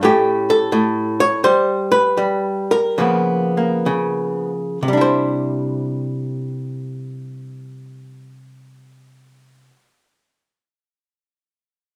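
A relaxed, playful solo jazz excerpt, cut from a longer piece, opens with a dark, clean archtop guitar, picked up front with a compressed hollow-body tone, slowing down over the first 4.8 seconds through loose, rubato swing and moving from A7 through Db6 to a Cadd9 in a lively studio room.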